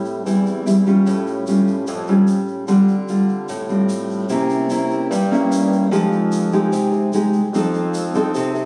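Bossa nova at 148 BPM in straight 4/4, this short, intimate and wistful cut from a longer piece is built around an up-front, full-bodied nylon-string guitar with a dark, deep classical tone, fresh strings and thumb-plucked playing. It moves through Am7, Aaug7, Dm7 and C7b9 before turning to Fm9 and F7. Beneath it a mellow bassoon holds the bass line with a punchy, classical-style attack and vibrato, while a quiet egg shaker adds a grainy, bright texture from 0.1 seconds onward. The phone-captured room sound carries light reverb and compression, giving a close, personal feel.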